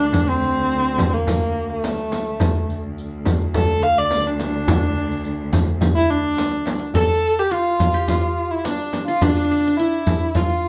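A bowed kamancheh sings the melody up front from the very start, its tone smooth and even with light vibrato and gliding portamento, ranging from A3 to F5 in D makam nihavent, while a cello holds a deep, rich drone on D2 beneath it with soft-attacked, expressive bowing. This fragment of a longer Turkish makam ensemble piece moves at 106 BPM in a straight 4/4, its mood hypnotic and soulful. A clay-shelled darbuka with natural skin sounds large and deep, close and dry under hard hands, joined by a softly played frame drum with a small-room character and a riq whose bright jingles carry a vintage, band-limited color. A drum fill at 6.4 seconds leads into a new section at 6.9 seconds, just before the cello drone stops at 7.0 seconds, and a plucked qanun enters on a second line between D4 and A4, its triple strings bright-edged and touched with slapback echo. The ensemble sits further back in a wet studio reverb, giving the kamancheh's warm voice a gentle halo as the passage runs to 10.7 seconds.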